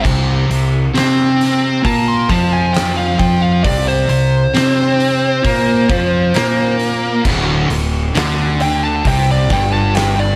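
Ominous and hypnotic, this short stoner and doom metal cut crawls at 67 BPM in a straight 4/4, sitting on a C7sus4 chord before shifting at 7.2 seconds to a rootless G#maj7#11 over D. A fuzz lead guitar carries a solo melody across the whole passage, its distorted tone trailed by analog delay. Beneath it, two picked fuzz guitars grind out the riff, one thick and slightly louder, the other compressed and set in the background. A fuzz fingered electric bass, round and overdriven, sits up front in the mix. An oversized low-tuned drum kit in a big room drives the pulse with a boomy kick, fat snare, dark cymbals and hi-hat, its sound saturated and gritty, stopping at 10.2 seconds just before the guitars and bass, all wrapped in light studio reverb.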